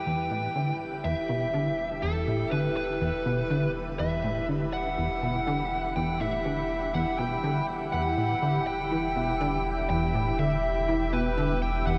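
Ambient, sequencer-driven space music in E minor at 122 BPM, expansive and hypnotic, where a bright, overdriven lead guitar carries an up-front melody with delay over a lush, detuned unison pad treated with chorus and phaser, a punchy, funky analog bass riff with a filtered pluck, and a round sine sub bass fading in from 0.1 seconds, all bathed in a shimmering reverb with an 8.6-second tail in a dark production cut from a longer piece.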